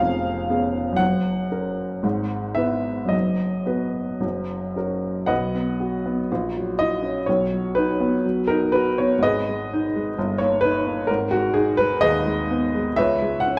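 Rubato shapes this slow 2/4 pulse, drifting between 54 and 65 BPM, as an upright piano plays alone in a romantic classical character piece in B major. The mood is warm and hopeful, the short passage having been cut from a longer work. The piano sounds woody, intimate and natural, placed up front with audible action noise, and its range reaches from E#1 up to G#5. Harmony moves through C#7/E#, F# and E/G# before settling on B, then turns toward G#m and D#/G from about 9.2 seconds, closing on C#5 at 13.0 seconds. A recital hall reverb with a 1.2-second decay surrounds the instrument, and the production leans dark and warm.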